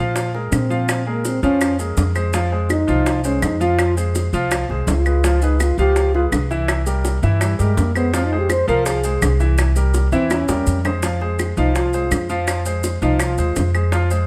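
Close, detailed microphones and a light reverb give this short cut from a longer Afro-Cuban jazz piece an intimate, sophisticated yet fiery sound, moving at a straight 166 BPM in 4/4 and set in F minor. A trombone with a bucket mute carries the solo melody from 0.5 s, its veiled, dark tone marked by vibrato and scooped notes, close-miked in a jazz style. Beneath it, an up-front upright bass played pizzicato on gut strings gives a woody, thumpy low end, while a grand piano comps with a natural, intimate touch and audible action noise. Round, low-tuned bongos struck with soft hands and grainy, mellow maracas carry a compressed, saturated edge, and dry claves click in the background. The harmony moves through Fm7, Db7 and C7 before a short fill at 10.3 s leads back to F minor to restart the section.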